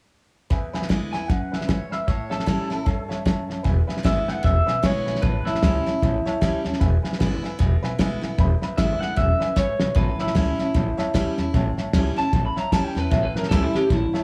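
A twangy, slightly broken-up electric guitar carries the melody up front from 1.1 s, touched with plate reverb and analog delay, in this rowdy, rollicking rockabilly excerpt at 152 BPM with a swung feel in E mixolydian, moving between E7 and A7. A cloth-damped drum kit with a fat snare and tight kick drives from the start alongside a bright, full-bodied picked steel-string acoustic guitar and a woody upright piano, both bathed in plate reverb. A thumpy, gut-strung upright bass joins at 3.7 s, and a drum fill lands at 9.6 s, all within a small-room ambience.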